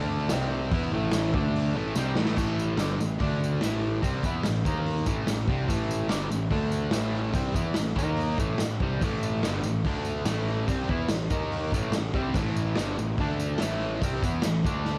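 This home recording on cassette has a light reverb and a raw, rowdy edge, and it sounds cut from a longer garage rock piece for a duo or trio in straight 4/4. Up front sits a bright, double-tracked fuzz guitar, distorted and compressed with a cassette-tape grain, picking a riff that moves among C5, A5, D5 and D#5 chords and keeps circling back to A5. Beneath it, a picked electric bass adds overdriven fuzz and a punchy, direct-and-amped weight. The acoustic drum kit comes in at 0.3 seconds with a gritty, saturated sound and a rolled-off top, set in a stone room, with crash, hi-hat, kick and a medium-tuned snare. A drum fill at 2.0 seconds leads into the main stretch at 2.4 seconds, while a jingly tambourine sits low in the mix from a small room.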